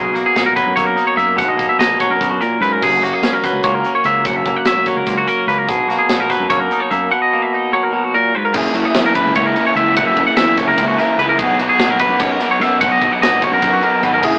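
A bright, twangy electric guitar spins high arpeggios across this short, intricate math rock and midwest emo excerpt, running in a brisk 7/8 from start to finish. Beneath it, a second clean, twangy guitar plays accompaniment in a lower register until 8.5 seconds, when a crunchy, double-tracked overdriven guitar takes over with a riff. A growling fingered bass with overdrive sits low and punchy, while a polished studio drum kit with airy, bright cymbals, a medium-tuned snare and a tight kick drives the odd-metre pulse. The harmony moves between Bmaj7 and F#9, giving the busy parts a sunny, open colour. The whole mix carries a rough rehearsal-room character, with tube saturation, an AM-radio tint and a moderate stone-room reverb.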